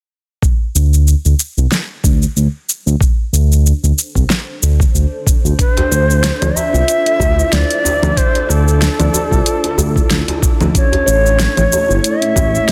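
A gritty, thumpy kick and an overdriven deep house kit of congas, hi-hat, shaker and fat snare open this meditative, hypnotic organic downtempo excerpt at 93 BPM with a swung sixteenth feel, joined by a smooth, up-front sawtooth bass that pumps under sidechain, then a very quiet, cloudy granular pad drifting in at 3.8 s, before a breathy, reedy ney takes the melody at 5.6 s through delay and shimmer reverb, over ringing steel tongue drum arpeggios and a distant, cracking djembe in the background.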